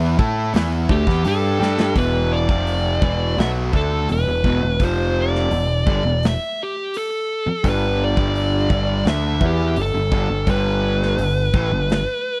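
Stoner and doom metal with a sludgy, ominous mood, moving at 85 BPM in E minor in this short cut from a longer piece, where a bright, double-tracked fuzz guitar riff and a growling, overdriven picked bass with tube saturation both start at 0.0 seconds. A big rock drum kit with a punchy kick and medium-tuned snare plays a fill before the second section arrives at 2.0 seconds, while a fuzz lead guitar carrying slapback echo sings its melody from 0.9 seconds over chords moving from D5 and E5 through F5 and Em to G5. The dry, close 1970s-style studio sound keeps the guitars and bass up front and gritty.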